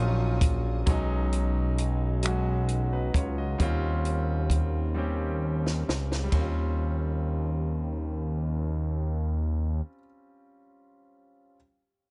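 A slow, straight six-eight sway carries this sultry, yearning R&B fragment, with a compact, dry cocktail kit up front playing finger snaps, hi-hat, punchy kick, high-tuned snare and dark ride cymbal, until a drum fill from 5.0 seconds leads into a new passage at 6.3 seconds. A fat, nasal analog bass with saturated sawtooth and square-wave tones also sits up front. A bright, polished concert grand piano carries the accompaniment through Ebm9, B69 and Eb13 chords, while a distant bowed string section with vibrato and portamento holds a soft chord for only the opening 0.8 seconds, all in an intimate small room with a rolled-off top.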